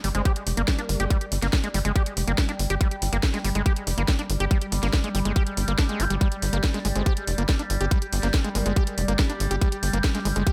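A dry, up-front mix opens this intense, psychedelic trance excerpt at 141 BPM in G phrygian, where an overdriven electronic kick and a garage kit with a cracking snare and hi-hat drive over a tight, punchy sawtooth sequencer bass, while a squelchy, gritty acid bass riff with distortion and digital delay pumps against the kick, a resonant drone of moving overtones sustains chords through chorus, phaser and reverb, and a wobbling formant-swept second line surfaces in the background briefly at the start and again from 7.0 to 9.8 seconds.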